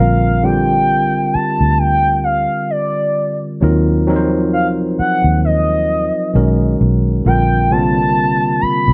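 R&B and neo-soul with a sensual, relaxed feel, this short cut from a longer piece sets a smooth, gliding sawtooth-and-sine lead with detuned chorus, vibrato and plate reverb over a worn, slightly out-of-tune tine electric piano heard through its built-in speakers and a dark, round, foam-muted electric bass, all three playing together from start to finish as the harmony shifts from Bb69 to Ebm6 at 3.6 seconds and through B69 back to Bb69.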